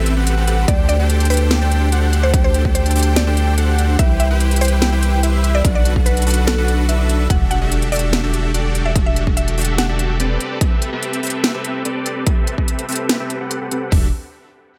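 A dry stretch of emotional, bittersweet future bass in a half-time feel, cut from a longer piece, opens on a drop where a huge, detuned supersaw riff and a thick, saturated sub bass pump with sidechain, while an airy, dreamy lead arpeggiates in the background and a woody, round FM pluck carries the melody through chorus and tape echo. Two electronic kits drive it: an overdriven big-room kit with a punchy kick, metallic hats and toms sits up front, and a trap kit adds a sharp snare and crisp hats. At 7.3 seconds the lead stops as a very quiet sub drop marks an impact and a filter sweep runs across the supersaw, with the harmony moving through extended chords such as Em11 and Am9.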